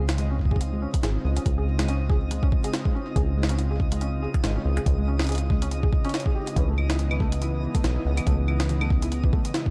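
A dark, close-sounding IDM excerpt at 141 BPM with a 16th-note swing, where a rubbery, saturated acid bass and a deep electronic kick sit up front beneath a gritty, pitched-up jungle sampler kit of claves, hi-hat and high-tuned snare with delay, while a felt-muted upright piano plays mellow arpeggios through dub echo over a warbling, nostalgic tape-like pad with chorus and a twinkling granular shimmer, moving from Dbmaj7 to a rootless Amaj9 at 6.6 seconds in an intricate, wistful mood.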